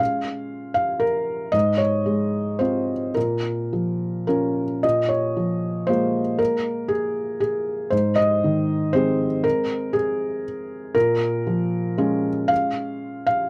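A felt-muted upright piano plays alone throughout this melancholic, wistful neoclassical minimalist fragment in Bb minor and 3/4, moving with a rubato feel at 105-121 BPM through a repeated passage built around Bbm7, Fm/Ab and Ab, its soft, mellow and intimate tone sitting up front with audible action noise and a touch of light reverb in a dry, close 1970s-style studio sound, cut from a longer piece at 13.5 seconds.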